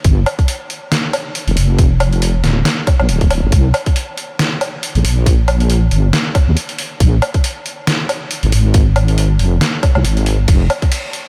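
Dark and brooding, this short cut from a longer deep dubstep piece moves in a half-time feel with a light swing on the sixteenths. A deep, soft wobble bass carries the low end from D1 to Eb2, its sawtooth and sine tone wobbling with a fast attack and sustained, compressed body, thickened by chorus. Sitting up front beside it, an electronic kick drum gives a tight, layered punch that sounds re-recorded in a small room. A trip hop sampler-style drum kit adds hi-hat, ride cymbal, a medium-tuned snare and woodblock, pitched down and gritty with a compressed, large-room character, placed a little lower than the bass and kick. Light reverb lends the whole a subtle sense of space across its roughly 11 seconds.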